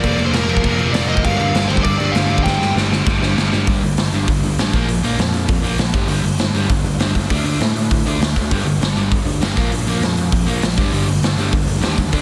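A dense, heavily limited modern master with light reverb gives this angry, aggressive punk rock excerpt its force, with a raw garage drum kit up front: a saturated, gritty sound with a punchy kick, a medium-tuned snare, hi-hat and crash cymbal in a pumping stone room. A biting lead guitar plays the melody until 2.7 seconds, while a biting overdriven guitar riffs in the background and drops out soon after, leaving an overdriven semi-hollow guitar with a hollow-body tone to carry the riff throughout beside a growly, amped picked electric bass. A drum fill from 2.5 to 3.7 seconds leads into the second section, where the chords move among G5, Bb5 and D5.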